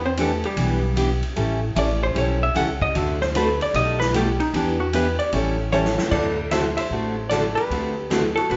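A vintage hollow-body jazz guitar leads this playful, cheerful slice of western swing country, taking a dark, clean, compressed solo up front from the opening until 6.1 seconds. Beneath it, a pizzicato upright bass with gut strings gives a woody, thumpy pulse, while a bright, full-bodied jumbo steel-string acoustic guitar joins at 0.2 seconds with picked accompaniment. A swinging big-band drum kit enters at the same moment, with a punchy kick, a medium-tuned snare, hi-hat, ride and crash sounding natural in a big room, and a fill at 5.7 seconds carries the music into a new section. The changes move through Em7, A9, D7 and Baug7 before landing on D9 as that second section begins. Captured as a band playing live together in a large studio with moderate reverb and a mellow, rolled-off top end, the passage is cut from a longer piece and rides on swung eighth notes.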